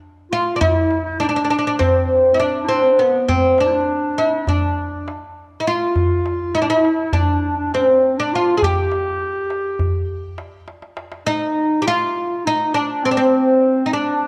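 A 9/8 pulse with a straight feel drives this short cut from a longer Turkish makam ensemble piece, its mood longing and soulful. The fretless oud carries the melody up front, its plectrum-plucked double strings sounding bright, woody and deep. Beneath it, a dark clarinet plays a second line in classical style, sitting distant and roomy. A large clay-shell darbuka with natural skin keeps the percussion close and warm, closing its part with a fill from 10.7 s before it stops at 11.3 s. At that point the music moves into a new section and the mode changes, leaving oud and clarinet to carry on together. Light reverb surrounds the ensemble, and the whole recording has the worn, warbling character of old cassette tape with a wavering pitch drift.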